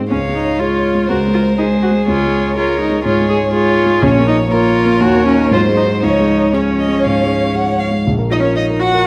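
A straight 4/4 pulse at 121 BPM drives this quick, restless and stormy classical-period movement for piano quintet in Db major, cut from a longer piece. An up-front grand piano with short sustain and a focused, bowed viola carry the accompaniment, the viola dropping out at 7.6 s, while a rich violin sings the melody with vibrato and a smooth top, and a second, warm violin and a close but backgrounded cello add expressive second lines with portamento. The harmony moves from Db through Bbm, Ebm7 and Ab7 before turning to Bbm as a new section opens at 8.1 s, all set in a wet scoring-stage reverb with a layer of vinyl crackle.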